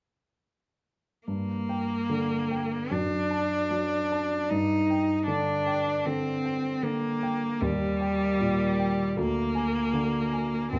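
Solemn and melancholic, this romantic classical duo in G minor moves at a rubato 77 BPM in 4/4, with a bowed solo cello singing the melody in a clear, smooth tone with vibrato over warm, natural grand piano accompaniment from 1.3 to 10.8 seconds. The harmony passes from Gm through D/F# and back to Gm, then settles on Eb before Bb7/D at 9.2 seconds. Close, detailed microphones keep both instruments up front in a light reverb, and the passage is cut from a longer piece.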